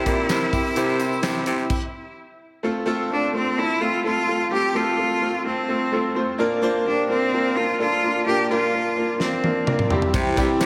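A bright, biting cello carries the melody up front throughout this hopeful, anthemic piano-driven pop excerpt at 128 BPM in 4/4, its bowed single-player tone intense and touched with vibrato. A clear, polished concert grand piano with deep bass and short sustain sits just as close, accompanying from start to finish with a lush chorus effect over chords moving from C to F, Bb and back to C. In the opening moments a raspy, gritty baritone saxophone plays the bass alongside a punchy modern studio drum kit with a fat snare and bright cymbals, a jingly tambourine in the background and a barely audible bowed string section holding sustained chords, before everything but cello and piano stops around 1.7 seconds. The drums return with a fill at 9.2 seconds, and at 10.1 seconds the saxophone and tambourine come back, joined by a tight, close-miked French horn section on a second line and a full-bodied picked jumbo acoustic guitar riff with finger squeak in the background. 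The whole mix is dreamy and soaked in a lush hall reverb.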